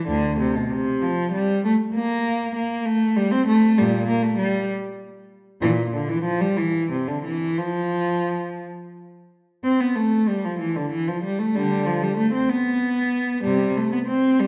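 In a rubato 6/8, this flowing, dance-like baroque-style suite movement for solo bowed cello, cut from a longer piece, features a warm, expressive player with soft attacks, vibrato and portamento, ranging from D2 to C4 and set up front in a wet recital hall reverb, with the opening material returning at 9.6 seconds.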